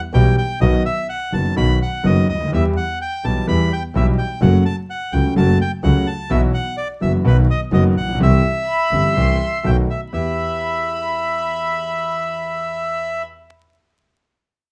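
Tango excerpt in E minor at 126 BPM with a rubato, sultry and melancholic feel, heard from further back in a club room with a touch of vinyl crackle. A reedy, bright bandoneon carries the melody up front with plate reverb over a smooth, vintage grand piano with long sustain and an earthy, bowed double bass that drops out at 10.3 s. From 8.7 s, a violin section adds a floating second line, played sul tasto with a soft attack and a pure, smooth top.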